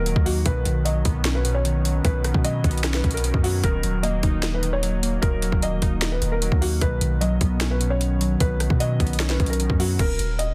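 Hip hop trap at 151 BPM in a half-time feel, menacing and eerie, cut from a longer piece, where a soft, felt-muted upright piano carries the melody over glassy, detuned digital keys, a deep, dark ambient pad sitting in the background, and a long, mellow sine-toned 808-style bass, while an up-front trap drum kit with hard-clipped kick, sharp snare, metallic hats, rim clicks, finger snaps and crash enters at 0.1 seconds, all moving through Badd9 and Ebm in a dense, heavily limited modern master.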